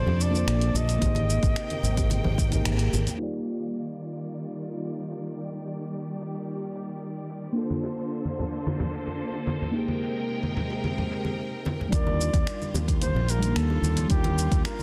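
A sunset chillout piece with a smooth, sunny mood in a straight 4/4, cut from a longer work and moving through lush major-ninth chords. A mellow FM electric piano carries the accompaniment throughout, soft and round with a dark, chorused, phased tint, cassette-tape character and digital delay, while a bright studio string section holds sustained chords that sound biting yet distant. A vintage-toned flugelhorn with vibrato sings the melody only at the opening and again from 11.9 seconds, trailed by delay, and a round, punchy fretless electric bass sits up front in those same stretches. A gritty, compressed sampler-style kit of finger snaps, hi-hat and shaker runs from 0.2 seconds to the end alongside ringing, hard-handed bongos and congas and, in the outer passages, a deep overdriven electronic kick that drops out after a band accent at 2.7 seconds. The middle stretch rides a long filter sweep before the opening material returns, all under light studio reverb and a dense, heavily limited modern master.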